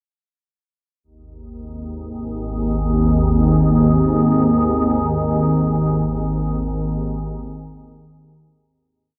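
A low, organ-like drone sounds alone from 1.7 seconds, its detuned, warbling unison tone sitting up front with ensemble chorus, built-in reverb and tape echo on its slow, sustained attack and long release. This short ambient piece floats in free time with a vast, ominous mood, held in a cathedral-like space with a 4.9-second reverb tail. A fade-out begins at 5.0 seconds and carries the drone to its close.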